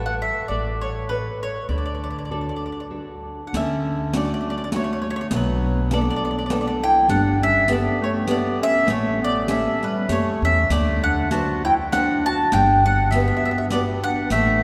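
Lively and romantic, this Italian folk serenade in D major moves in a swung, rubato 3/4 at 100 BPM. An up-front, woody, double-strung mandolin carries the melody over dark, full-bodied fingerpicked nylon-string guitar with audible finger squeak and a growly pizzicato upright bass. At 3.5 seconds a smooth-topped classical clarinet joins on a second line, along with a compressed, saturated riq with dark jingles played with soft hands. Everything sits in a long cathedral reverb from a church or concert hall as the chords drift from Dmaj7 through Bm7, Gadd9 and A7 to Gmaj7 in this excerpt from a longer piece.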